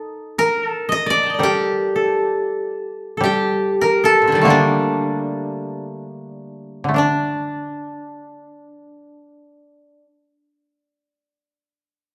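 A bright, woody koto carries the melody up front in this calm, austere piece of Japanese chamber music, its plucked tones sharp from the fingerpicks and dry at the source. A second koto, warmer in tone and just as close, plays a higher line alongside it. A third, mellow koto enters at 1.4 s with a lower accompaniment, sitting slightly farther back. The pulse is rubato in 4/4, somewhere between 53 and 90 BPM, and the music slows down from 0.4 to 7.0 s in the D miyako bushi mode before moving into a new section. A moderate recital hall reverb gives the three instruments a shared space in this passage, which is cut from a longer piece.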